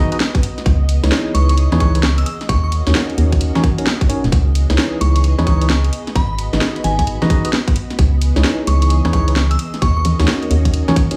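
A hollow, organ-like FM bass sits up front in this bouncy, moody two-step UK garage excerpt at 131 BPM in C# dorian, its dark, percussive notes entering at 0.7 seconds as the chords move between G#m7, C#m9 and D#m7. A tight, overdriven electronic kick and a layered garage kit of congas, hi-hat and cracking snare drive the swung groove, while a bright tine electric piano plays clean stabs through a digital delay. A silky, warbling string machine holds soft sustained chords with ensemble chorus and sidechain pumping, and from 1.3 seconds a crystalline synth bell carries the melody with chorus and delay, all set in a studio reverb.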